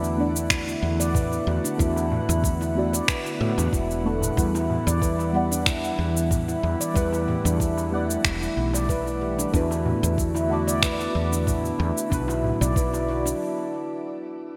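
A lightly swung 4/4 groove of up-front electronic shaker and finger snaps with gated reverb, a soft tape-warm electronic kick entering at 0.5 s and a crisp, distant darbuka drives this hypnotic organic downtempo excerpt, where a round, woody fretless bass pumps beneath ringing stainless-steel handpan arpeggios, an airy, breathy pad and deep, mellow chord stabs set in the background with chorus, phaser and delay, the handpan, pad and stabs glowing with shimmer reverb inside a lush hall and a bright 1980s-style digital sheen before a short break at 13.4 s.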